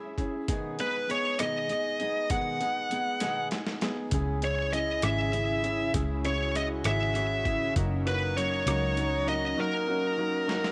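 Aching and dramatic, this excerpt of a six-eight pop ballad sets a smooth grand piano and a full-bodied fingerpicked steel-string acoustic guitar with tape echo beneath a gritty, compressed boom bap sampler-style drum kit with a thumpy kick, high-tuned snare and a fill at 3.2 seconds, while a dark, distorted high-gain lead guitar carries the melody up front, and from 4.1 seconds a breathy, chorused pad and a round, punchy muted fingered electric bass join, the bass stopping at 9.5 seconds, within a light digital ambience.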